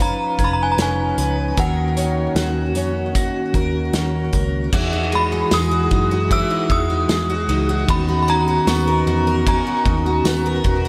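Dreamy, floating dream pop at 76 BPM: a chiming FM synth melody with ensemble chorus, delay and shimmer reverb rings over bright, octave-doubled twelve-string acoustic guitar arpeggios with finger squeak, soft flute-like tonewheel organ chords through a fast rotary speaker, a round foam-muted electric bass, a loose indie drum kit with dark cymbals, tight kick and tambourine in a pumping small room, and a faint bell-like glockenspiel struck with rubber mallets, moving from C#7/E# and D#m7 to Emaj9 at 4.7 seconds in this short cut from a longer piece.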